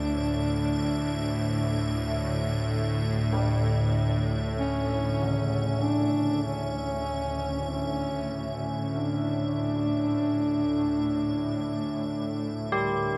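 The rhythm moves at a slow, straight 48 BPM in 4/4. This unsettling, desolate dark ambient drone is a fragment of a longer piece, tuned to A4 = 441 Hz and resting on a D5 chord. Up front, a tense, string-like bowed drone with a sawtooth edge, a noise layer and vibrato holds low sustained tones with slow attacks and long releases. A dark solo duduk sings a folk-style melody with scooped notes and vibrato until 12.7 seconds, trailed by a diffuse ambient delay. High above, an icy glass pad adds airy, crystalline shimmer through chorus and its own reverb, sitting quietly in the mix. From 3.3 seconds, bronze carillon bells with a worn iron clapper ring out arpeggios in the background, their vintage, band-limited tone echoing through the same diffuse delay, and the whole piece is bathed in a long, wet cathedral reverb.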